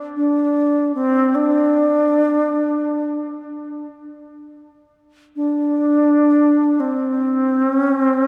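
World meditative excerpt in free time, where a solo alto flute, airy and up front with vibrato, a crisp attack and an unsteady line, plays a haunting phrase between C4 and D4 from 0.2 to 8.3 seconds, its tape echo trailing into a wet spring reverb that fills the echo-heavy mix.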